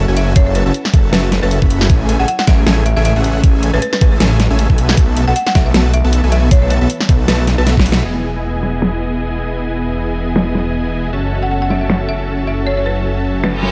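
A huge, compressed supersaw riff and a thick, detuned saw bass with tube saturation fill this lush, euphoric future bass excerpt at 156 BPM in E major, with a half-time feel and a light swing on the sixteenths, all set in a digital ambience. The piece opens on a drop running to 8.1 seconds, where an up-front knocking electronic kick and a dubstep kit with a huge snare, bright hats, finger snaps and crash cymbal pump the riff, bass and melody through sidechain compression. A dry, woody folk marimba played with hard mallets carries the melody through tape echo, dropping out after 7.9 seconds and returning at 11.4 seconds. Behind it all, a very quiet, ethereal pad holds sustained chords with slow attack, ensemble chorus and phaser, moving from F#m7 through Amaj7 and B7sus4 to Emaj7 in the second section. A drum fill leads into a band accent at 7.9 seconds, with the kick having stopped just before at 7.8 seconds, and a reverse cymbal rises at 13.5 seconds as the excerpt cuts off.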